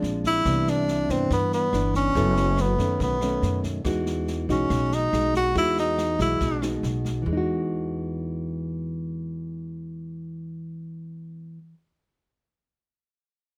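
A breathy, mellow tenor saxophone leads this breezy, sunny bossa nova excerpt at 141 BPM in E major, playing a subtone jazz solo with vibrato and scooped notes from 0.3 to 6.8 seconds, over up-front thumb-plucked classical nylon-string guitar, woody pizzicato upright bass, and an open jazz kit with a boomy kick, rim click and medium-tuned snare in a small room that drops out at 7.1 seconds, all captured close, detailed and dry through chords such as Cmaj9, F#m7, B9 and Emaj9.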